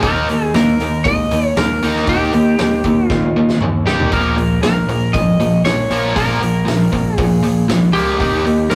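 This menacing, aggressive hard rock passage in Bb dorian at 118 BPM opens with the full band, led by a double-tracked, overdriven electric guitar riff placed up front with a touch of spring reverb, while a twangy, slightly broken-up lead guitar carries a compressed, picked melody above it. A growling fingered bass with punchy overdrive holds the low end, and a distant, roomy drum kit with a fat snare and rolled-off top plays a fill from 3.1 to 4.1 seconds as the harmony moves from Eb to Bb5. The rough rehearsal-room sound carries tube saturation and a small room's moderate reverb.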